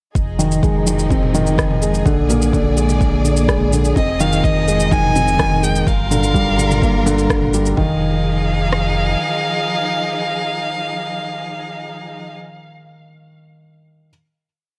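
A felt-muted upright piano sits up front, its soft, intimate tone and audible action noise carrying a tape-echoed arpeggiated loop of 12 steps that drifts against the bar in this moving, melancholic piano-and-strings electronica at 126 BPM in F dorian. Beneath it, a lush, distant string section holds sustained chords, a round analog bass with sidechain pumping keeps the root, and two layers of deep house drums supply a four-on-the-floor kick, rim clicks, shaker and low toms, with the bass and drums dropping away by 9.2 seconds. At 4.0 seconds a dark solo violin enters with expressive vibrato and portamento, singing a motif-based, tape-echoed melody into the final chord, and the piano alone lingers to 14.1 seconds.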